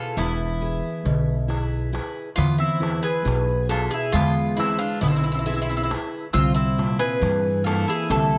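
Greek folk from a bouzouki band, reflective and dark, moving at 136 BPM in a straight 9/8, with the picked, metallic double strings of the bouzouki carrying the melody up front, some of its strings octave-doubled, while a mellow, woody mandolin plays a second line. A full-bodied jumbo steel-string guitar picks the accompaniment, and from 0.2 seconds a pizzicato upright bass with steel strings sits up front beside a crisp metal-shell darbuka that sounds distant, as if in a large room. Light reverb surrounds the parts as the harmony holds on E before shifting to C7 at 6.3 seconds in this passage cut from a longer piece.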